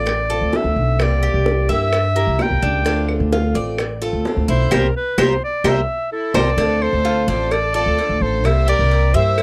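Latin music in the Cuban son and guajira style, this sultry fragment of a longer piece moves in a straight four-beat feel over an alternating Dm7 and C7 vamp. A clear, close-miked clarinet carries the melody up front as a classical-style solo, while a Cuban tres spins bright, metallic arpeggios on its doubled strings and a picked archtop guitar adds boxy accompaniment with an old-string tone. The pizzicato upright bass sits forward, dark, growly and thumpy, and tight, high-tuned bongos and cowbell sound from a distant, large room, with woody claves tucked in the background. The band hits an accent from 4.7 seconds, and at 6.1 seconds a rich studio violin section enters with a soft-attack, floating second line played sul tasto. The recording has the dry, close sound of a 1970s-style studio session.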